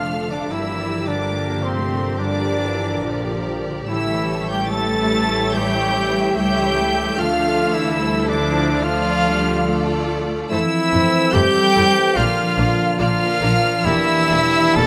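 Clear trumpet stabs ring over a slow, rubato romantic orchestral passage in D minor at 72 BPM, cut from a longer piece, where a symphonic violin section carries a smooth, lightly vibrato melody up high while a second, lush violin line, a dark solo clarinet and a pure flute section weave soft supporting lines, a rich viola section adds bowed accompaniment, a very quiet mellow trombone section and French horn section hold solemn sustained chords, a faint concert harp rings out fingerpicked arpeggios, and a rich cello section and an intimate double bass section anchor the yearning harmony with a bowed bass line, all set in a moderate concert hall reverb captured by close, detailed microphones.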